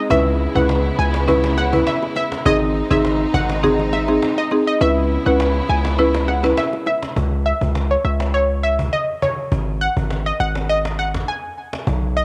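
Dancehall at 102 BPM in C# minor, this bouncy, sultry excerpt pairs a round, detuned sawtooth analog pluck melody with chorus, cassette tape and analog delay against a hard-hitting 808-style bass that stays punchy and up front throughout. A lush bowed string section holds sustained chords over C#m7 and G# until 7.1 s, while a buzzing marimba with medium mallets adds dry, woody accompaniment and tight, high-tuned bongos play very quietly in the background. By 7.2 s the strings, marimba and bongos have dropped away, leaving the pluck, the heavy sine bass and a distant cajon with faint snares, all heard through light reverb and the character of a home cassette recording.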